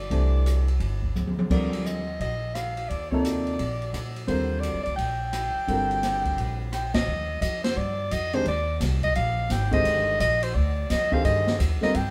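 A warm, vibrato-laden soprano saxophone carries the searching, spiritual melody up front yet with a distant, roomy quality, floating over a woody, thumpy pizzicato upright bass on gut strings and the short-sustained chords of a natural-sounding baby grand piano. This brief excerpt of modal jazz swings at 172 BPM, its harmony moving from Cadd9 to Ebmaj9 and settling in Eb major from 7.1 s, while an acoustic jazz kit with dark cymbals and a boomy kick adds a fill at 1.2 s and joins a band accent at 6.9 s. The whole group plays live together in a stone room with a moderate reverb.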